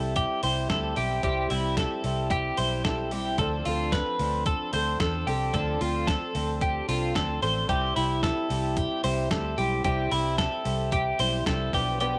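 A shimmering, octave-doubled fingerpicked twelve-string acoustic guitar and a clean, up-front twelve-string electric guitar playing tape-echoed arpeggios open this nostalgic, breezy jangly indie pop excerpt over a dark, round, foam-muted electric bass, with a gritty, overdriven sampler-style drum kit joining at 0.2 seconds with thumpy kick, snare and hi-hat, all set in light reverb as the chords move from C to Dm7 and back to C.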